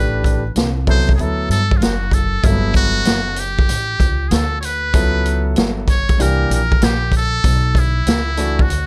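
Jazz-hop with a smoky, nocturnal mood and a swung 4/4 feel, this short excerpt sets a buzzy, thin trumpet with metal mute and light vibrato singing the melody over intimate concert grand piano chords with audible action noise and long sustain, a woody, thumpy pizzicato upright bass, and an up-front vintage drum kit with a punchy kick and rolled-off top, all in a dry, close sound.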